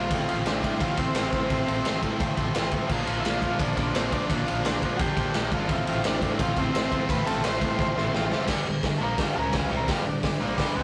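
A rough rehearsal-room recording with tube saturation and light reverb carries this raw, rowdy garage rock passage at 172 BPM, where a biting, double-tracked overdriven guitar riff and a gritty, pumping drum kit sit up front over a growly fuzz bass in the background, while a buzzy vintage combo organ carries the melody with light vibrato above a second, barely audible organ holding sustained chords, until a drum fill and organ fill at 7.8 seconds lead into an organ solo from 8.5 seconds.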